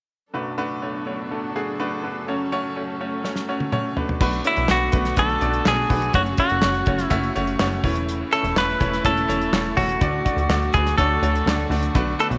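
Bright grand piano chords and a lush, bowed string section in the background open this driving, dramatic piano-driven pop excerpt at 124 BPM, moving through Bm7 and F#m before a damped 70s drum kit with dark cymbals and handclaps enters on a fill at 3.2 seconds, a punchy, funky analog bass joins at 4.2 seconds, and a twangy, compressed clean electric guitar carries the melody up front from 4.5 seconds over A/E and D, all set in a moderate echo chamber reverb.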